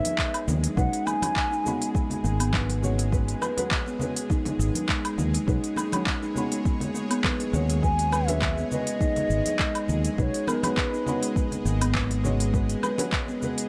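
An airy, close-miked bamboo bansuri with vibrato sings the melody at 0.0 and returns at 7.8 seconds with delay over this meditative organic downtempo piece in G# minor at 102 BPM, where a woody, thumbnail-plucked kalimba with tape echo spins arpeggios, a soft felt-muted upright piano with tape echo sits in the background, a bright, detuned, string-like bowed-like drone with sidechain pumping sustains chords, a dark, round fretless electric bass sits up front, and a tape-warm electronic kick drum, an organic electronic drum kit of crisp hi-hat, handclaps, shaker and woodblock, and ringing, soft-handed congas keep a lightly swung groove in a small room.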